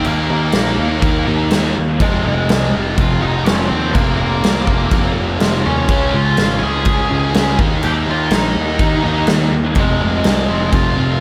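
This is an angsty, dark slice of quiet-loud alternative rock in F minor, moving at 124 BPM in a straight 4/4 and cut from a longer piece. A dark, octave-fuzz lead guitar carries the melody from the outset, its picked line given a slapback echo. Beneath it, a thick, warm fuzz guitar and a tight, bright distorted guitar sit in the background playing riffs, the tighter one also touched by slapback echo. An up-front, growly picked electric bass with overdrive anchors the low end, while a huge acoustic arena drum kit with a punchy kick, medium-tuned snare and crash cymbals plays until it drops out at 10.8 s, leaving the guitars and bass to ring on to 11.2 s. The harmony moves through Eb5, Fm, Db and back, all set in a lush hall reverb with a touch of small-room ambience for a big arena sound.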